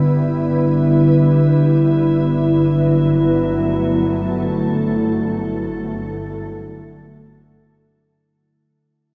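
A glassy FM pad sits up front in this short ambient excerpt from a longer piece, holding sustained chords with a slow attack and long release, thickened by ensemble chorus and carried by built-in and shimmer reverb. In free time, the mood is peaceful and weightless, moving from G6 to Dadd9/G at 1.6 seconds. Beneath it, a muted symphonic double bass section plays bowed, con sordino, on a low G, its veiled, lush tone colored by vibrato as it fades in across the whole passage. The dark production places both parts in a cathedral reverb with a 5.5-second tail, lending the sound a vast, drifting space. The recording begins fading out at 3.8 seconds and ends at 8.3 seconds.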